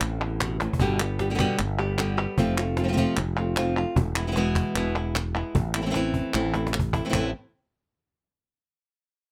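Passionate and fiery, this short flamenco excerpt moves at 152 BPM in A minor, with a bright, fingerpicked flamenco guitar carrying the melody up front, finger squeak audible, over a growly, punchy fretless electric bass, both sounding from the start until 7.3 seconds. Crisp, dry palmas hand claps and a snappy cajon with snares, played with soft hands in a small room, drive the rhythm, the cajon entering at 0.4 seconds and adding fills near the start and again from 6.5 to 7.1 seconds. The chords descend from Am through G, F and E before returning to Am, captured with close, detailed microphones and light reverb, and the harmony drops away at 7.1 seconds.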